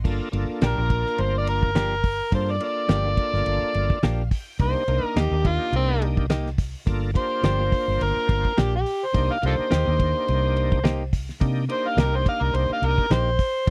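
A gritty, overdriven harmonica carries the melody up front with tongue slaps and scooped, jazz-style notes in this brooding, smoky straight-eighth soul blues snippet. A shouting tonewheel organ with key click, chorus vibrato and slow rotary speaker adds a fill at 3.5 seconds, while clean, compressed direct-recorded guitar stabs enter at 0.6 seconds over a round, punchy foam-muted bass and a damped 70s kit with fat snare, tight kick and dark cymbals, all cycling between Gm7 and Cm7 in a dry, close 1970s-style studio sound.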